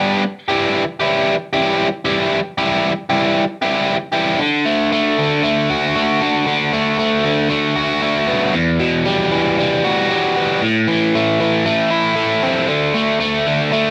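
Rock with a carefree, upbeat mood, moving at 116 BPM in a straight 4/4 and tuned to A4 = 442 Hz. A lone electric guitar carries the whole passage: bright, biting and overdriven, picked and double-tracked, sitting up front in a wet studio reverb while it ranges from E2 up to G4. The chords run from Em to D, then through Bm7/D and Emadd9 before settling on the power chords A5 and D5, with the second section arriving at 4.4 seconds in this short passage cut from a longer piece.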